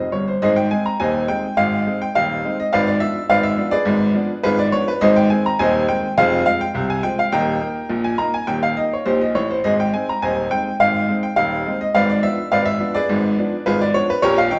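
A bright, woody upright piano plays solo and up front in this jaunty, playful ragtime piece in Ab major, moving at 104 BPM in a straight 2/4. It opens with a short fill before the main theme begins at 0.4 seconds, and the harmony moves from Ab through Abdim7, Fm and Eb before returning to Ab and Abdim7. The vintage sound, recorded live in a wet stone room with the top end rolled off, gives this passage from a longer piece a smooth, brilliant sheen.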